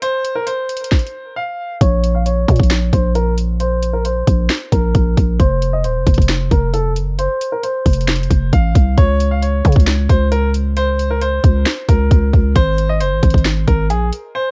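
A trap drum kit with a hard-clipped kick, a sharp snare, metallic hats and finger snaps sits up front in this eerie, menacing half-time hip hop excerpt at 134 BPM in Bb minor, where a clear, polished concert grand piano melody plays through a low-pass filter that sweeps from 1.8 to 9.0 seconds, a growling, buzzy 808-style bass enters at 1.8 seconds over chords moving from Bbmadd9 to Dbmaj7(no3) and Ab, and a dry, worn cassette-tape warble with drifting pitch colours the whole mix.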